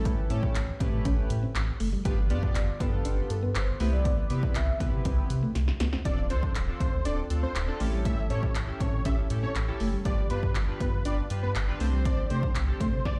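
A mellow, horn-like synth lead with chorus, phaser and delay opens this confident, energetic dance-pop excerpt in D dorian at 120 BPM, over a glossy, warbling chorused polysynth, a round sine sub bass and a clean electric guitar riff in the background, with the polysynth and bass pumping to the sidechain. Up front, a punchy, dry analog drum machine drives kick, snare, hi-hat and handclaps, and a drum fill at 5.6 seconds leads into the second section at 6.1 seconds. There a thick, nasal, detuned unison lead with vibrato takes the melody, and a big studio reverb lends the whole mix the sound of a bare room on a large system.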